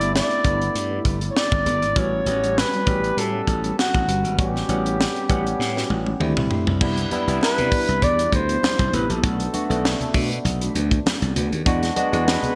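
A soft-edged, roomy flugelhorn carries the melody with jazz-style vibrato, sitting at a slight distance with a touch of delay. Around it, this upbeat, urban slice of polished 1980s jazz-funk pop moves at 99 BPM in 4/4 with a light sixteenth-note swing. A barky tine electric piano, clean and bright through a combo amp and bathed in lush chorus, supplies the chords. A dark, fingered electric guitar riff with subtle chorus sits in the background. Growly, punchy slap bass and a tight, up-front funk kit with a high-tuned snare and gated reverb drive the groove, and a drum fill from 5.6 s leads into a new section with close, hard-handed congas joining at 7.0 s. The harmony moves from G6 and A13 through D7sus4 to Cmaj7, Bm7 and E7 under a moderate plate reverb and a crisp digital 1980s sheen.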